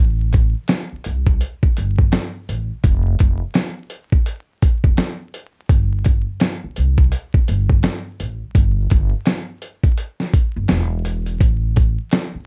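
A gritty, compressed sampler-style drum kit with a thumpy kick, fat snare and hi-hat sits up front from 0.3 seconds, swinging at 84 BPM over a woody pizzicato upright bass that opens the cut at 0.0 seconds, giving this melancholic, nostalgic lo-fi hip hop fragment a dark, dry sound laced with vinyl crackle.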